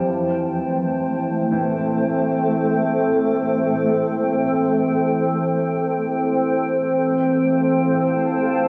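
Peaceful and weightless, this ambient excerpt drifts in free time in F major, resting on a single Fmaj7 chord for its 8.7 seconds. A blurred, cloudy granular pad holds sustained chords up front beside a nasal analog drone with chorus, while a very quiet felt-muted upright piano adds soft, intimate arpeggios until 7.0 seconds. A lush hall reverb and the warbly pitch drift of worn cassette tape give the whole a hazy, aged sheen.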